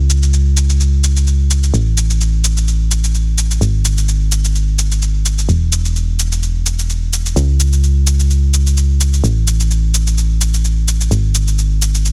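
Piano house at 128 BPM in 4/4, with a light swing on the sixteenths, this short cut from a longer piece carries a euphoric, uplifting mood. A solid FM bass runs the full 12.1 seconds, sitting between E1 and C#2 with a punchy, round, dark tone, fast attack and decaying notes placed up front in the mix. A cabasa enters at 0.1 seconds and keeps going to the end, sounding electronic, layered and produced, set lower than the bass and given a studio reverb. Overall the sound is dry and heavily compressed, with a radio-ready loudness. The whole passage stays within a single section.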